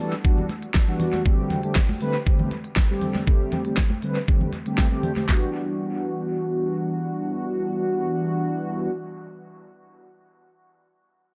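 Nu-disco at 119 BPM in E minor, this sensual, groovy cut pairs up-front mellow synth brass, round, detuned and sawtooth-edged with chorus and dub echo, moving from Em9 to D7sus4 and back to Em9 by 5.3 seconds. Layered electronic pop drums drive it with a knocking kick, fat snare, handclaps and crisp hats, one layer carrying dub echo, while bright, high-tuned congas sit in the background. The drums and congas stop around 5.4 seconds, leaving the synth brass to sustain alone until 8.9 seconds in an echo-heavy mix with light reverb.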